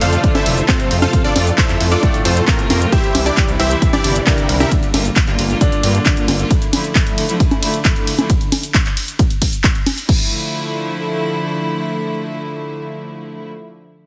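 A heavily compressed, radio-like sound with light reverb and a digital ambience frames this soaring, bittersweet slice of uplifting trance, cut from a longer piece at 134 BPM in D minor, opening straight into the drop. A punchy, detuned supersaw stab carries the melody through sidechain pumping and digital delay, shadowed by a very quiet, round analog pluck with chorus and a clear, intimate baby grand piano whose action noise sits in the background under its own delay. Beneath them, a gritty, saturated synth bass with oscillator sync drives the low end, while a rich, earthy chamber string section holds sustained chords with light vibrato, also pumping against the kick. The punchy analog drum machine brings congas, crash, handclaps, hi-hat, ride and shaker from the start, joined at 0.2 seconds by a heavy, layered, tape-warm electronic kick up front, and the chords move from F through C and Gm7 to Dmadd9. 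After the drums fall away at 10.2 seconds, the strings carry on alone over Dmadd9 until the close.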